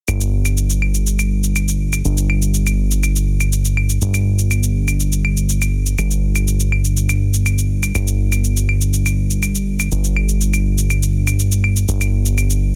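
Cinematic and hypnotic, this short cut from a longer melodic techno piece moves at a steady 122 BPM in a straight 4/4 feel. A fat analog bass carries the low end from 0.1 seconds, a thick, detuned sawtooth sound centred around G1 with a fast attack and a decaying tail, sitting up front in the mix. Beneath it, an electronic shaker and claves supply the drum part, their analog, tape-warm tone set lower than the bass. The percussion drops out at 12.6 seconds, leaving the bass to ring on until the close. The dry sound and dense, heavily limited modern master give the passage a tight, close presence.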